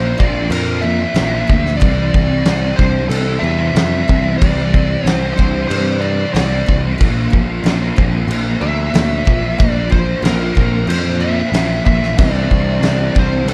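Shoegaze-leaning dream pop rock in C mixolydian at 92 BPM, this blissful, hazy excerpt drifts between Bbadd9 and Cadd9 in a dark, small-room mix. A thick fuzz guitar riff with distortion and ensemble chorus sits over punchy picked electric bass and a loose, roomy indie drum kit with a fat snare, entering at 0.2 seconds. A smooth overdriven lead guitar carries the melody through slapback echo above a very quiet, shimmering twelve-string acoustic guitar playing octave-doubled arpeggios with finger squeak. At 12.2 seconds a double-tracked crunchy overdriven guitar joins in the background, along with a very quiet, slightly broken-up electric guitar through a small old amp.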